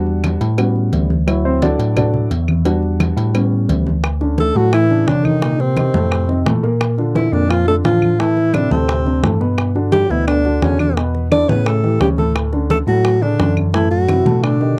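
Sophisticated and lively, this Afro-Cuban jazz excerpt moves at 173 BPM in D major, opening with a dark, woody upright piano taking a solo, its action noise audible, over a bell-like tine electric piano holding down the bass. Congas sit low and soft in the background alongside dry claves, while a tight, high-tuned cowbell and bongos fill out the percussion. At 4.4 seconds a clear alto saxophone takes the melody with light vibrato and scooped notes, joined by a gritty, growling trombone line, all captured in a close, dry 1970s-style studio sound.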